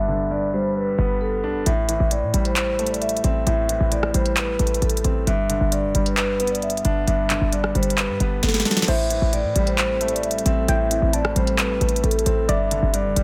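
The excerpt opens under a filter sweep, with a mellow, ringing vibraphone played with soft mallets carrying the melody over a clear, intimate concert grand piano, both muffled by a low-pass filter, while a punchy, tight 808-style bass sits up front from the first moment. This is a brooding, melancholic trap beat in A minor at 133 BPM, felt in half-time, moving between G and Am7. At 1.7 seconds an electronic trap kit arrives with a sharp snare, crisp hi-hats, handclaps, rim clicks and crash cymbal, and a drum fill leads into a new section at 8.9 seconds. There a soft, round, wave-folded pluck enters in the background, coloured by chorus, phaser and tape echo, followed at 9.9 seconds by a dark, glassy FM pad with slow attack, ensemble chorus and its own reverb. The piano's audible action noise and deep bass give the close, dry mix a polished, present character.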